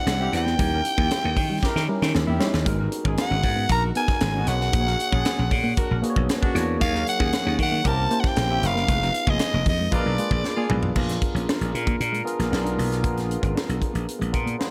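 At a straight 116 BPM in 4/4, this slick, urban slice of polished 1980s jazz-funk pop rides a tight funk drum kit with a high-tuned snare and gated reverb, a growly, punchy slap bass and tine electric piano in lush chorus, while a dark, fingered electric guitar riff and a mellow horn section sit in the background beneath a raspy, gritty soprano saxophone melody up front that stops at 10.7 s, just before the second section begins at 11.0 s, over chords moving from Cmaj7 through Eb7b9 and Abm9 to Bb7b9.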